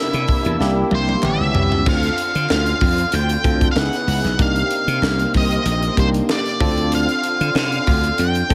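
A dark, up-front octave-fuzz lead guitar opens this glossy, upbeat slice of polished 1980s jazz-funk pop at 95 BPM, alongside a barky tine electric piano with analog chorus and a lush bowed string section sitting in the background over a C9 chord. Punchy, growly slap bass and a tight funk drum kit with a high-tuned snare and gated reverb join almost at once, and a drum fill leads into a section where the harmony moves through Dm7, Dbm9 and Cm9 with a lightly swung sixteenth-note feel. Very quiet, distant group handclaps come in at 1.2 seconds and drop out at 7.7 seconds, and the mix sits in light small-room reverb.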